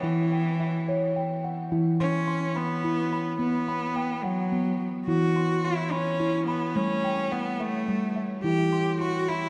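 Bathed in a wet echo-chamber reverb with a studio ambience, the production sounds dark and warm. This brief cut from a longer world meditative piece moves in a steady 6/8, with a hypnotic, gentle mood throughout. Up front, a steel tongue drum struck with rubber mallets rings out round, pure arpeggios across a range from E3 to C6, treated with shimmer reverb and delay. Alongside it, a single bowed cello carries the melody with a clear, focused tone and vibrato, also dressed in shimmer and delay. After a short opening, a new passage begins at 1.7 seconds, and the harmony drifts through Em, B5, E5 and A before settling back on Em at 8.4 seconds.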